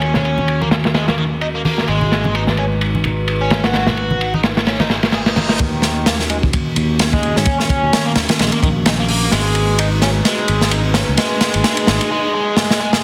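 A swung breakbeat groove at 129 BPM drives this energetic, raw fragment. A crunchy, gritty drum kit sits up front with dark cymbals and a tight kick, joined by a growly overdriven fingered bass and a biting, double-tracked overdriven guitar riff over Ebm7 and Abm7 chords, while a warbly, nostalgic tape-like pad holds detuned chords in the background with chorus and sidechain pumping, and close congas play until 5.5 s. A very quiet reverse cymbal and riser lead into a build-up from 5.6 s, where the guitar gets a filter sweep and drum fills arrive near the end, the whole mix pressed into a heavily compressed, radio-like sound in a moderate studio room.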